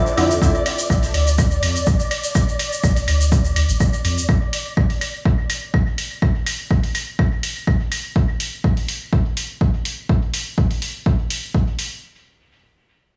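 Dub techno at 124 BPM in D minor, nocturnal and meditative, this excerpt opens with a flickering, granular texture drifting on its own reverb alongside a mellow acoustic tube shaker and a deep, round sub bass that pumps with sidechain and carries tube saturation, all three ending by 4.3 seconds. A punchy analog kick sits up front with an electronic hi-hat, both re-recorded in a large room and carrying on to almost 12 seconds, while tape-warm claves with dub echo pulse in the background until 8.0 seconds. The mix is dry on reverb yet heavy on echo, framed by studio ambience.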